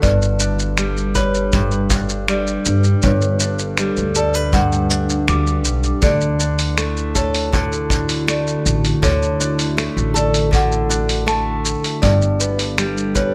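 From the opening second, an up-front, fingerpicked nylon-string guitar plays arpeggios with finger squeak and delay over a woody, pizzicato upright bass, a tight brushed kick and a muffled, compressed sampler kit of finger snaps, hi-hat and shaker, while a mellow, round soft-mallet marimba with delay carries a second line and a detuned, warbling tape-like pad with chorus and 12-bit grit holds nostalgic chords in the background, all within a light small-room ambience as this pastoral, playful folktronica excerpt at 80 BPM in 4/4 moves from G to D at 6.0 seconds and returns to G at 12.0 seconds.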